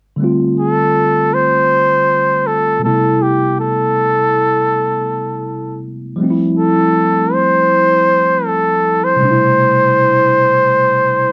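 Smooth and introspective, this short cut from a longer R&B piece moves at an unhurried 80 BPM in 4/4, with a light 16th-note swing in A minor. A mellow tine electric piano starts the accompaniment at 0.2 seconds, its clean tone heard through built-in speakers and softened by an analog chorus as it moves through G9sus4, Am9 and Fmaj9 before returning to Am9. At 0.6 seconds a warm flugelhorn enters up front as the solo voice, singing a pop-style melody in a compact upper register with light vibrato, a smooth top and a touch of slapback echo. Both parts sit close in a dry 1970s-style studio sound with a moderate booth ambience and a faint mains hum beneath them, playing together until 11.3 seconds.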